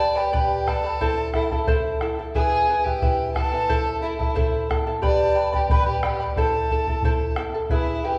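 A mellow, airy large wooden quena carries the tongued, expressive melody with vibrato in this festive, earthy Andean folk piece in A minor at 90 BPM in 2/4, joined by a dark, smoothly bowed solo violin second line, while a shimmering fingerpicked charango on double strings and a round bombo entering at 0.3 s sit up front within a reverberant recital-hall space.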